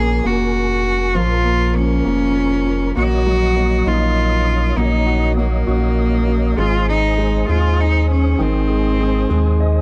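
A gentle, straight six-eight lilt carries this tender, romantic pop ballad, which is cut from a longer piece. A single bowed cello sings the melody up front with a soft attack, vibrato and a smooth, intimate sul tasto tone. Beneath it, a concert grand piano supplies polished accompaniment with long sustain and audible action noise. A fingerpicked steel-string dreadnought adds arpeggios with fresh strings and a slapback echo in the background, while a flute-like tonewheel organ holds soft, clean chords, colored by chorus vibrato, key click and a fast rotary speaker. A round, sine-like sub bass sits prominently underneath as the harmony moves from Bbm7 to Ebm7/Bb and then to Ab, and the piano slips in a brief fill at 9.3 s within the dry, close 1970s-style studio sound.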